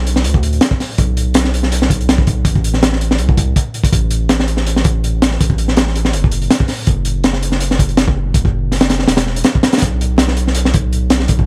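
A crunchy, gritty breakbeat kit with a punchy kick and high-tuned snare sits up front over a deep, thick saturated sub bass in this dark, nostalgic jungle-flavoured drum and bass cut at 163 BPM in B minor, dry, with vinyl crackle across its 11.5 seconds.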